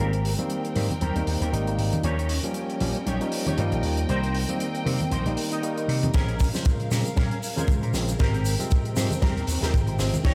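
This sensual, sleek nu-disco excerpt opens with a barky tine electric piano laying down a bright, clean accompaniment with tape echo, over dark, woody strings holding lush bowed chords with vibrato and a punchy, amped vintage slap bass, all three breathing with sidechain pumping. A twangy envelope-filtered electric guitar picks a clean riff through ensemble chorus, a low-pass filter and tape echo. A tight funk kit of high-tuned snare, hi-hat and shaker enters at 0.1 seconds, joined at 0.4 seconds by soft-handed congas and tube shaker sitting band-limited in the background. The harmony moves from Abmaj9 through Eb7, Cm7 and Bbm7 before returning to Abmaj9, with a lightly swung 16th-note feel. The passage is a build-up, and at 6.1 seconds a tight, mid-forward kick drum arrives with a drum fill that carries it to the end. The mix is dreamy and soaked in a lush hall reverb.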